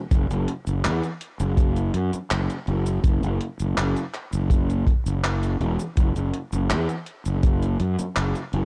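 Woozy and hazy, this short vaporwave excerpt in a straight 4/4 pairs an up-front, growly fuzz bass, fingered and overdriven, with a gated, sampler-style 80s drum machine of cabasa, handclaps and hi-hat re-recorded in a small room, plus a smooth, punchy acoustic kick with a rolled-off top that drops out at 7.6 seconds, all set in a dark, dry production with a cassette tape character.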